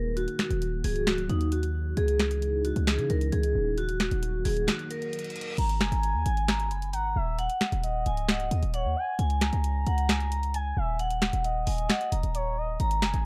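This dark, moody trap cut from a longer hip hop piece sits in a digital ambience, carrying a brooding, melancholic weight at 133 BPM in a half-time 4/4 feel. A vibraphone struck with medium hard mallets carries the melody throughout, its metallic, ringing tone shimmering with a slow motor vibrato inside a boxy small room. Beneath it, a deep analog pad built from detuned sawtooth and triangle with a sub octave holds sustained chords through chorus and phaser, swelling in with a slow attack over a D#m to C#madd9 progression. A punchy, heavy 808-style bass with a sine body and noise layer sits up front beside an electronic trap kit of sharp snare, bright hi-hats, finger snaps and crash cymbal. After a break where a reverse cymbal rises at 4.9 seconds, the pad drops away and a smooth gliding portamento lead of triangle and sine enters at 5.8 seconds as a second line, its vibrato carried through chorus and tape echo while the chords move through G#sus2 and C#sus2.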